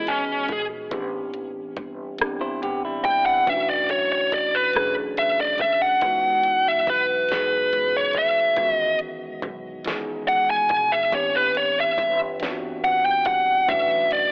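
A distorted, high-gain lead guitar opens the recording up front with a dark, yearning solo that carries the melody over a slow six-eight R&B groove at 47 BPM in C# phrygian, cut from a longer piece. A mellow tine electric piano supports it with phaser and a cassette-tape haze, moving through minor eleventh chords on C#, A and B. The smooth drum kit, produced and electronic-sounding, enters at 0.1 s with a soft kick, fat snare, rim click and hi-hats, while a woody, thumpy upright bass, plucked on steel strings, sits in the background. A clean, compressed electric guitar adds a brief picked second line between 2.4 and 3.5 s. Moderate spring reverb and a lo-fi home cassette sound with a telephone-like narrowness give the whole a late-night feel.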